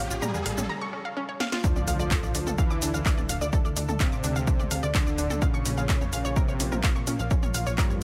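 Melodic techno at 127 BPM, melancholic yet driving and cut from a longer piece, opens with a brief build-up in which a riser, a filter-swept arpeggio from a round, detuned analog pluck with chorus and dub echo, a very quiet lush pad, a funky wave-folded plucky analog bass, a mellow unison lead with vibrato and digital delay, and a techno drum kit of cracking snare, metallic hats, handclaps, shaker and toms lead through a break and a drum fill into the drop at 1.6 s, where a punchy, up-front electronic kick, an electronic impact and a smooth, evolving soft supersaw second line arrive, the pluck, bass, lead and supersaw pumping to the sidechain in light reverb as the chords shift from Bbm to Dm and back.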